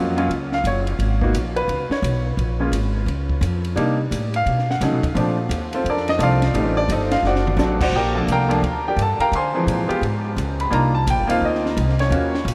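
Jazz piano trio in a relaxed, swinging 4/4 at 173 BPM, where a woody, up-front upright piano with analog delay takes the melody and solos throughout over a thumpy, gut-strung pizzicato upright bass and a dark, compact cocktail drum kit with a high-tuned snare and punchy kick that enters at 0.2 s and drops a brief fill at 7.2 s, just before the music settles into G minor at 7.9 s, all bathed in a huge, dreamy ambient reverb in this short excerpt.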